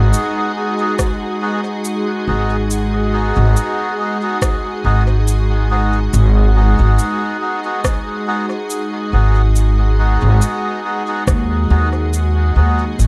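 Hazy and deep, this ambient dub excerpt drifts at 70 BPM in G# minor over a single G#m7 chord, with a pure, warbling organ-like pad sustaining chords through ensemble chorus, reedy, breathy melodica stabs trailing dub echo, a woody, dark pizzicato upright bass up front, a thumpy, muffled, pitched-down kick entering at 1.0 s, and tape-toned electronic cabasa and rim click scattered into the echo-heavy mix.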